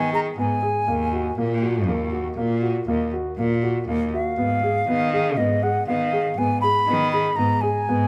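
A straight 7/4 pulse at 120 BPM carries this pensive, restless contemporary instrumental excerpt in G# dorian, where a pure, woody flute with vibrato and a crisp attack sings the melody up front over dark, boxy baby grand piano arpeggios with audible action noise and a rich, focused bowed cello bass, as the harmony moves between G#m and D#m inside a moderate scoring-stage reverb.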